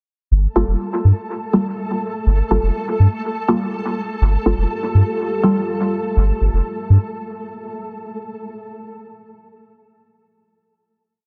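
A clean, up-front sine sub bass carries a syncopated riff beneath sparse, muted dub chord stabs with chorus, phaser and echo, while a grainy, flickering texture holds a high note and a moody ambient pad enters at 4.7 seconds in this hazy, meditative dub techno piece at 123 BPM in G minor, resting on a Gm9 chord.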